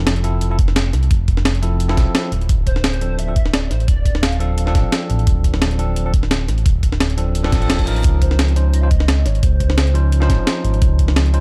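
A bell-like tine electric piano with tape echo and a smooth, gliding synth bass open this dreamy, uplifting fragment of liquid drum and bass at 173 BPM. A gritty, compressed breakbeat kit with a high-tuned snare and hi-hat joins almost at once, and a knocking, layered electronic kick follows moments later, both set in studio ambience. The sawtooth bass sits up front with vibrato and portamento, sliding beneath chords that move from Fmaj7 to Dm7. At 2.7 s a hollow, woody clarinet-like synth lead drifts in, sitting in the background and coloured by phaser, ensemble chorus and tape echo, and it returns later for a second phrase. A faint reverse cymbal rises at 7.5 s, leading into a shift to Dbmaj9 at 8.0 s. The production is dark and close, with little reverb, and the 16ths carry a light swing.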